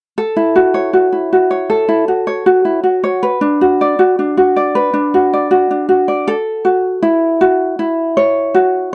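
A fingerpicked acoustic ukulele, warm and light, plays solo up front in this short pop excerpt at 79 BPM in 4/4, moving through F#m7 and Bm with a heartfelt, carefree mood, touched with light reverb in a dry, close 1970s-style studio sound that shifts to a new section at 6.3 seconds.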